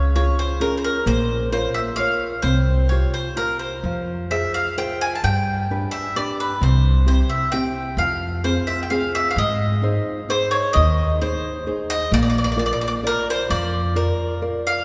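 In a straight 3/4 at 130 BPM, this Italian folk serenade sways in a romantic, wistful mood, opening in F harmonic minor and turning to Ab major at 9.4 seconds. A picked bowl-back mandolin carries the melody up front with the warmth of its doubled strings, over a small, fingerpicked nylon-string guitar and a woody, thumpy pizzicato upright bass on gut strings that drops out at 14.1 seconds. The whole excerpt is bathed in the long, wet reverb of a church or concert hall.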